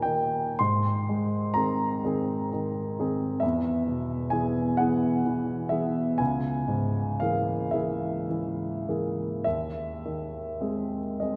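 Slow and flexible in a rubato 12/8, pulsing at about 33-46 BPM in dotted quarters, this romantic classical nocturne for solo baby grand piano feels nostalgic and dreamy. The piano sounds present and up front, ranging from Db2 to C6 as its harmony drifts from Eb and Ab through E and Bbm7b5/Db before settling on Ab/Eb at 9.4 seconds. A long cathedral reverb from the church or concert hall surrounds this 11.4-second fragment, cut from a longer piece.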